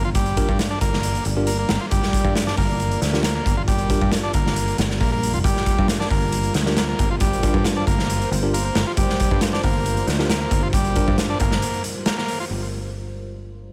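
A straight 136 BPM breakbeat groove in G minor, cut from a longer piece, drives this energetic, funky clip: a punchy, gritty garage drum kit sits up front in a bright stone room, with a growly, foam-muted picked bass, a buzzy vintage combo organ riff with delay, and worn, slightly out-of-tune electric piano stabs trailed by delay, all over a deep, moody detuned pad with chorus and sidechain pumping in the background, before a break at 11.6 s and a short closing section from 12.5 s where only the bass and pad carry on.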